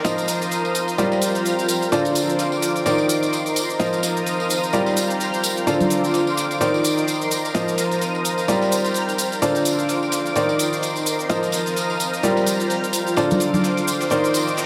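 A swung sixteenth-note groove in 4/4 drives this energetic, bittersweet piano house excerpt. Underneath, a gritty, compressed sampler-style breakbeat kit of hi-hat and snare sits very quiet beneath ringing tambourine and congas played with soft hands. An overdriven, layered cabasa joins at 0.1 s from the background, sounding as if re-recorded in a large room. Up front, a woody, vintage upright piano plays a short-sustained riff through a digital delay, cycling over a repeating F7sus4, Gm7, Dm7 and Cm9/Eb progression. Behind it, a silky sawtooth string pad holds bright sustained chords with ensemble chorus and vibrato, while a cloudy granular pad adds an evolving, blurred texture through its own built-in reverb. A lush hall reverb surrounds the mix, lending it a spacious dancefloor glow.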